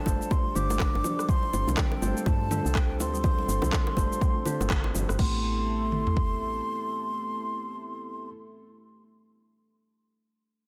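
Warm and spiritual, this afro house excerpt at 123 BPM in A minor swings its sixteenths as a breathy silver concert flute with vibrato and tape echo carries the melody over a dark, chorused analog pad and clean tine electric piano stabs, both pumping to the sidechain, while a soft kalimba plays arpeggios, a round, woody FM bass pumps beneath, and an electronic drum kit with a deep, up-front kick, toms, crash, handclaps, rim click and shaker sits alongside tight bongos and distant, ringing congas, with a band accent at 4.7 seconds before the chords move from G7sus4 to Am7 at 5.2 seconds and the rhythm section falls away by 6.6 seconds, leaving flute, pad and piano.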